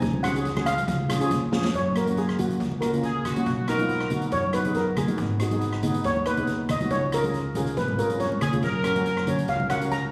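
A carefree, bouncy calypso groove opens with a lead steel pan up front, its shimmering, mellow melody carried over a second pan playing double-seconds accompaniment, both struck with soft rubber sticks. Beneath them, a pizzicato upright bass with steel strings gives a woody, thumpy low end, while a street-band drum kit of hi-hat, kick, rim click and a medium-tuned snare sounds airy and polished, with a boomy kick. Bright, close and dry congas played with gentle hands sit in the background, adding a thin-skinned tone to the swung sixteenths. After a drum fill, the lead pan takes a solo from 1.7 seconds as the harmony moves from F# through Bmaj7 and G#m, and a clear, tight jazz-style horn section with light vibrato and a gentle attack adds a brief second line at 3.0 seconds and again at 8.4 seconds. The whole band sits in a moderate concert-hall reverb with a club-like, phone-in-the-room quality, and the piece is cut from a longer performance.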